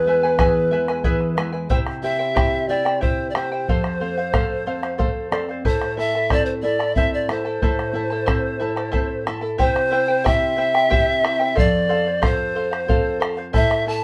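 Andean folk in 3/4 at 91 BPM, wistful and earthy, set in A minor with a breathy, bright pan flute carrying the melody up front with vibrato and a soft attack. A shimmering, fingerpicked charango with double strings and a full-bodied classical nylon-string guitar supply the accompaniment, the guitar adding a fill at 4.7 seconds, while a deep, dark bombo sits close and dry from 0.4 seconds. The ensemble plays live in one room with moderate studio ambience, moving through E, C, F and A minor, in a passage cut from a longer piece.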